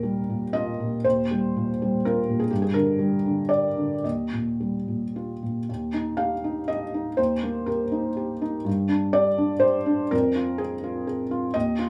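Neoclassical minimalist piano in Eb major and 3/4, hopeful and intimate, with a solo felt-muted upright piano playing rubato around 108-128 BPM across a short excerpt cut from a longer piece, its soft, mellow tone sitting up front with audible action noise in a small room's moderate reverb as the harmony moves from Ebadd9 through Gm and back before shifting at 5.7 seconds toward G5 and closing on Fm.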